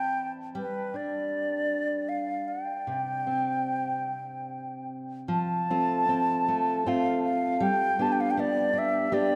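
A wooden flute and a fingerpicked steel-string acoustic guitar begin together, opening this pastoral, tender Celtic slow air, cut from a longer piece. The flute carries the melody with an airy, bright tone, soft attacks and gentle vibrato, sitting up front between B4 and A5. Beneath it, the guitar supplies a darker accompaniment from C3 to G4, also close and present. The air moves freely in rubato around 78 BPM in 3/4, in G mixolydian, with harmony drifting from C/E to G5 before a chordless stretch at 2.9 seconds. A second section arrives at 5.3 seconds, settling onto F and then G. A moderate cathedral reverb with a long 5.6-second decay surrounds both instruments, giving the performance a spacious, hallowed atmosphere.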